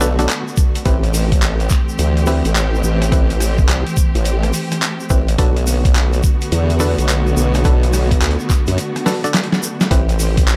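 Gritty and swaggering, this glitch hop excerpt swings on its 16ths as a lush, bowed symphonic string section holds vibrato-laden chords, pumping against the beat, while a muted, stringy clav drops clean stabs through tape echo and a formant-swept wobble bass sits up front, its sawtooth-and-sine tone thickened with chorus and tube saturation. A grainy, band-limited tube shaker ticks along from the start, a pitched-down boom bap kit of snare, handclaps, hi-hat and rim click enters at 0.2 seconds, and a thumpy, compressed electronic kick lands up front at 0.6 seconds. The chords move between Bm7 and Am7 in a digital ambience, with a break at 8.8 seconds carrying a drum fill at 9.1 seconds.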